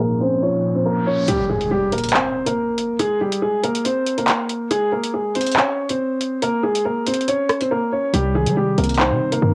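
A dark, up-front baby grand piano carries the melody throughout this ominous half-time drill excerpt, its long sustain softened by a low-pass filter. It opens over a worn, slightly out-of-tune tine electric piano with a cassette-tape tint, a very quiet ethereal pad with a slow attack and chorus, and an electronic riser, all under a filter sweep. At 1.3 seconds an impact lands and the tape-warm drill kit comes in with metallic hats, handclaps and rim clicks, its kick held back as the harmony moves through minor and major chords. After a brief silent gap at 7.7 seconds, the kick drops in at 8.1 seconds alongside a punchy, heavy 808-style bass with a fast attack and decaying sine tone, while the electric piano returns. The whole mix has the lo-fi, filtered character of a home cassette recording, with light reverb and a menacing mood.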